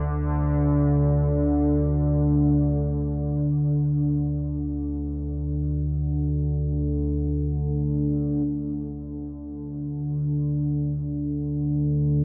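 Ambient and free-time, this desolate, ominous fragment cut from a longer piece sets a lone analog drone up front, an evolving sawtooth and pulse-wave tone with pulse-width modulation, a moving notch, slow attack and long release sustaining between D2 and D3 through chorus and tape echo, all soaked in a huge reverb with an 8.6-second tail and the warbling pitch drift of worn cassette tape, shifting to a new section at 8.5 seconds before the 12.2-second cut.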